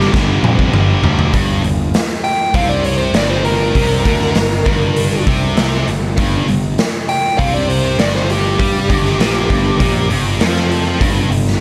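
A heavy, driving hard rock excerpt with light reverb opens on a raw garage drum kit, up front and gritty with a punchy kick in a bright stone room, playing a fill over a dark, overdriven lead guitar melody, a fuzzy, round picked bass, an overdriven electric guitar riff and two high-gain guitars, one double-tracked and set back, the other dropping out at 1.3 s as the lead guitar solo takes over until the cut at 11.6 s.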